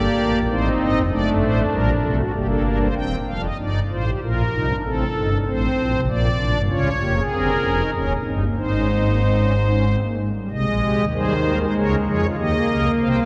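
A shimmering pipe organ on soft string-celeste stops carries this contemplative, serious baroque-style four-part fugue in 3/4, heard up front alone through a cut from a longer piece, its romantic voicing spanning Eb1 to G5 and shifting to a new key at 6.7 s before its opening material returns at 10.5 s, all wrapped in a wet church reverb with a 3.0-second tail and a dark, warm production.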